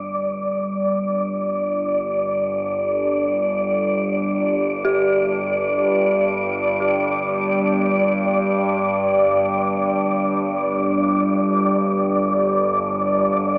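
A breathy, wind-like tuned noise texture sits up front in this ominous, cavernous dark ambient drone, held high at D5 beside an evolving analog drone of sawtooth and pulse waves that rumbles low with chorus and phaser. Further back, an eerie, detuned FM synth bell plays mellow, inharmonic arpeggios through chorus and tape echo. All three parts fade in across the full 13.6 seconds of this cut from a longer piece, and the mix is soaked in a huge reverb with a small-speaker sound.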